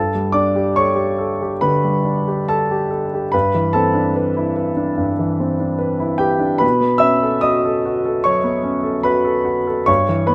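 Dreamy and luminous, this short excerpt of impressionist solo piano drifts in a free, rubato 4/4, its harmonies moving from Gadd9 through Am11/G to B9. A clear concert grand carries the whole passage alone, sitting up front with a natural tone and deep bass that reaches down to G2 while the upper notes ring as high as E6. A light reverb lends the sound a soft halo, and the piano is tuned slightly low at A4 = 439 Hz.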